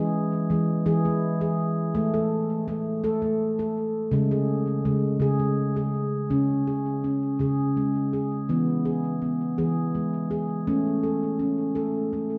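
A slow, straight 6/8 pulse at 55 BPM, counted in dotted quarters, gives this meditative world piece in C# minor its hypnotic, gentle sway. A solo handpan carries the whole passage from 0.0 to 12.4 s, ranging from C#3 to A4 and sitting up front with a ringing, stainless-steel tone and a smooth, fingertip touch. Tape echo trails its notes, and a wet echo-chamber reverb with a 1.3-second decay wraps it in a dark, warm studio space. The harmony drifts from E to an open, chordless stretch, then settles on C#5 before a second section begins at 6.3 s and moves back through E to A. This short passage is cut from a longer piece.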